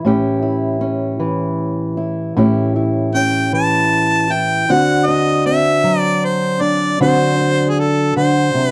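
A bright, close-miked harmonica with light vibrato and scooped notes enters at 3.1 seconds, playing jazz-style solo lines over a woody, boxy fingerpicked old ladder-braced acoustic guitar on old strings in this rollicking, swaggering acoustic country blues fragment at 52 BPM in 12/8, moving from A7 to D7 at 4.7 seconds, with both parts up front in a dark production with light reverb.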